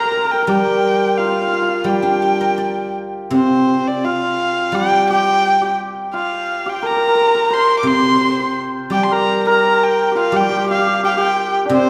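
Rubato phrasing loosely follows a 2/4 pulse around 87 BPM in this tender, graceful Chinese traditional chamber piece in G yu mode, cut from a longer work, where an intimate, close erhu carries the melody with light vibrato, portamento and an airy bow, a bright, shimmering hammered dulcimer rings out a second line, and a silvery guzheng played with fingerpicks joins at 0.5 s as accompaniment, the three placed up front yet heard from further back in a wet recital hall with a 1.8-second reverb and a faint mains hum.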